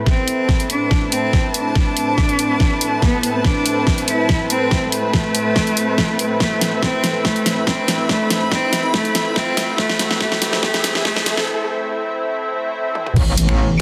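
Driven at 142 BPM in a swung half-time 4/4, this chaotic, heavy wobble dubstep build-up in A minor rides on a knocking electronic kick and an up-front dubstep kit with a huge snare, bright hats, crash, finger snaps and toms, while a lush, detuned unison pad with chorus and sidechain pumping holds an Amadd9 chord beneath a rich, bowed string section. A clear, intense solo cello carries the melody through tape echo until 11.3 seconds, a very quiet riser builds underneath, and after a break from 11.5 seconds the impact lands at 13.2 seconds, where a metallic, saturated FM wobble bass snarls in on A1. The hall reverb is lush and the master dense and heavily limited, and the fragment is cut from a longer piece.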